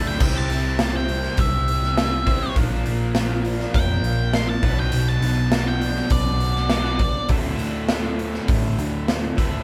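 Driving and sunny, this classic rock excerpt in a straight 4/4 feel features a dark, fuzzy octave-fuzz lead guitar soloing over a bright cranked stack guitar riff and a background overdriven semi-hollow guitar, while a round, amped short-scale hollow-body bass and an up-front big rock drum kit with a punchy kick and bright cymbals carry a C, Bb, Bm and Dsus2 progression, the lead dropping out at 7.3 seconds as the band plays on live in one room with light reverb.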